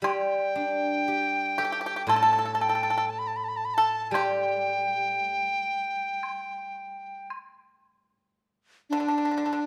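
This short Chinese traditional chamber piece, cut from a longer work, moves in a free, rubato 4/4 around 58 BPM with a festive yet graceful mood. A large dizi carries the melody from the opening moments, its bamboo tone reedy and buzzing, with a crisp attack and a pure, straight sound that sits close-miked and up front. Beneath it, a fingerpicked pipa plays a second line with a dry, percussive bite. A steel-string zither, also fingerpicked, adds a ringing, silvery accompaniment until about 7.3 seconds. A woodblock with a small-room sound adds percussion through the opening stretch before dropping away, leaving dizi and pipa to carry the brief closing passage that begins at 8.4 seconds, all set in a light reverb.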